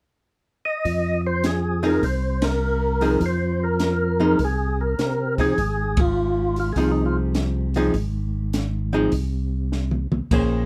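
A swung 4/4 groove at 102 BPM drives this smoky, soulful soul jazz organ trio in F minor, cut from a longer piece and settling on an Fm7 chord. A compact cocktail drum kit sits up front with a dark, smooth acoustic sound: a high-tuned snare, punchy kick, hi-hat, ride, crash and toms, all with a rolled-off top. The tonewheel organ carries the bass line in a full, thick voice with light overdrive, chorus vibrato and a stationary speaker. Above it, a second percussive tonewheel organ states the melody in a fat tone with key click, second harmonic percussion and a slow rotary speaker, until it drops out at 7.2 seconds. A miked, amplified archtop guitar joins at 1.8 seconds with clean, hollow-body picked accompaniment. The band hits accents together, and a drum fill at 9.7 seconds closes the passage, all inside a moderate club ambience.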